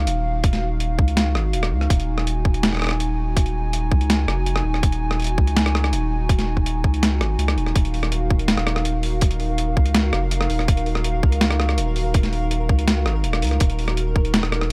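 Cinematic and tense, this half-time drum and bass excerpt sets a dark, detuned analog pad with sidechain pumping and chorus over a thick, saturated sub bass, while a tight, overdriven electronic kick and a gritty, compressed sampler-style kit of hi-hat, rim click and snare sit up front, and a faint pulsing gated texture with chorus and reverb joins in the background at 8.0 seconds.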